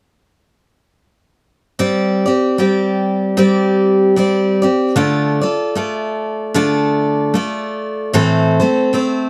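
Folk piece for solo picked steel-string acoustic guitar, hopeful and gentle in mood, moving at an unhurried pace with a lightly swung eighth-note feel in 4/4. The guitar serves as accompaniment, entering at 1.8 seconds and playing until 9.3 seconds, spanning from its low bass register up into a singing upper range. Its tone is bright and up front, with an auditorium-like body and the small squeak of fingers on the strings audible along the way. The harmony drifts from Gsus4 to Dm and settles on Am, lending the passage a quietly searching quality. Close, detailed microphones and a light reverb keep the sound intimate, and the recording is cut from a longer piece.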